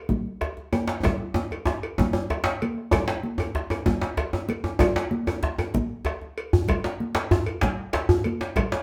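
A deep, dark bombo, close and dry conga playing, and a medium-tuned djembe set back in the background all begin together at 0.1 seconds. It sets a festive, driving West African traditional drum ensemble moving at 128 BPM in a straight 12/8. A metallic cowbell joins moments later. At 0.7 seconds a second djembe arrives up front, struck with hard hands and carrying metal rattles, its sound catching the live room. The congas stand out as bright and high-tuned, with a thin, damped skin played with soft hands. A drum fill from 1.0 seconds leads the ensemble from its opening passage into a second section, all heard as a live band in one room with moderate studio reverb in this short extract cut from a longer piece.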